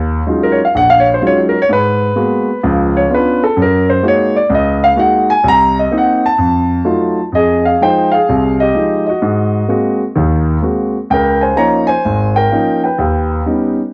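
A swung 4/4 pulse at 127 BPM, with eighth notes leaning into a 66% swing, carries this short solo jazz excerpt cut from a longer piece, its mood smoky and late-night. A grand piano plays alone throughout, ranging from Ab1 up to Bb5, its tone natural with long sustain and placed up front, colored by the grain of cassette tape. The opening passage moves through rich extended harmony, Ebm11, Abm9, Db7b9 and Gb69, then turns through Cm7b5 and F7b9 to settle into F minor at 7.3 seconds. The second passage opens on Fm7 and passes through Ab9 and Db69 before closing on an unresolved Ebaug7 at 13.0 seconds. Light studio reverb and the intimacy of a home cassette recording give the sound a close, lived-in character.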